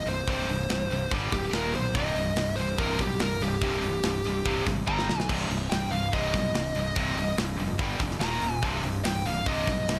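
Aggressive and heavy, this heavy metal excerpt cut from a longer piece drives forward in a straight 4/4 feel. A warm, distorted high-gain lead guitar plays a solo across the full 10 seconds, its melody sitting between G4 and Bb5. Beneath it, two picked rhythm guitars play a low riff from C2 to G3, one bright and heavy, the other scooped, both set back in the mix. A fingered electric bass with growly fuzz and overdrive anchors the bottom, while a tight acoustic drum kit with bright cymbals, a medium-tuned snare and a tight kick enters at 0.1 seconds and throws in a fill around 4.9 seconds. The harmony moves between power chords and C minor, and the whole sits in light reverb and studio ambience, with some lossy compression artefacts audible.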